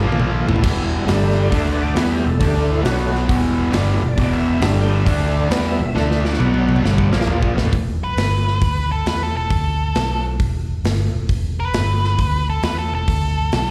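A gritty, overdriven tonewheel organ takes the solo spot at the start of this brooding, smoky blues rock and southern rock passage, cut from a longer piece. It holds thick sustained chords with audible key click, chorus vibrato and a slow rotary speaker, until 7.5 seconds. Beneath it, a double-tracked, compressed fuzz guitar drives a riff up front with slapback echo. A round, foam-muted vintage bass plays fingered lines, and a big acoustic rock kit swings with a punchy kick, bright cymbals and a drum fill at 5.9 seconds. At 8.0 seconds a dark octave-fuzz lead guitar takes over the melody in a narrow upper range, coloured by plate reverb, slapback echo and analog delay. The whole band sounds like a live gig heard through the venue's PA, with club reverb giving it a light, roomy presence.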